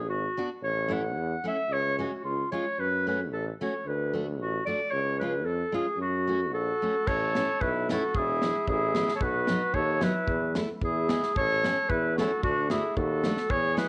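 A straight 2/4 pulse at 112 BPM drives this jolly, festive alpine folk dance band piece, cut from a longer performance and opening in F# minor before turning to A major at 7.1 s. An up-front, warm clarinet in a classical style carries the melody from the start, sounding distant and roomy and touched by a slapback echo. Beneath it, a clear, vintage tuba plays the bass line, also up front, while a picked steel-string acoustic guitar with a dark dreadnought tone supplies the accompaniment. At 6.5 s a mellow trumpet enters with a second line, and at 7.1 s a tight, dry funk drum kit joins with kick, crash and a high-tuned snare. Light reverb and a small-room ambience frame the festive band sound.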